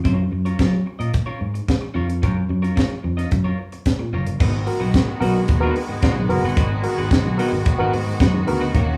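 Danceable and sultry, this disco groove opens with a tight, dry funk kit sitting up front with its high-tuned snare, a fingered electric bass that is direct and amped, and a slightly broken-up, picked electric guitar over an F#maj7 before a barky tine electric piano and a biting, earthy string section with light vibrato join at 4.4 seconds as the harmony moves to G#m7, all captured as a band playing live in a small room with light reverb.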